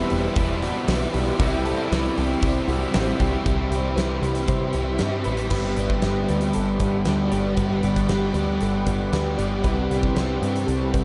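Blissful and wistful, this shoegaze and dream pop excerpt cut from a longer rock piece layers an up-front, overdriven garage guitar riff with ensemble chorus over a dark, round, punchy overdriven bass, a hollow, reverse-reverbed semi-hollow guitar riff, a bright double-tracked distorted guitar riff that stops at 3.5 seconds, clean direct-recorded arpeggios drenched in lush chorus and tape echo, a shimmering, ethereal phased pad holding sustained chords, and a huge arena drum kit with a fat snare, punchy kick and bright cymbals entering at 0.1 seconds, all soaked in a vast, dreamy reverb as the chords drift from Em7 through Cmaj7 to Gmaj7 and back to Cmaj7.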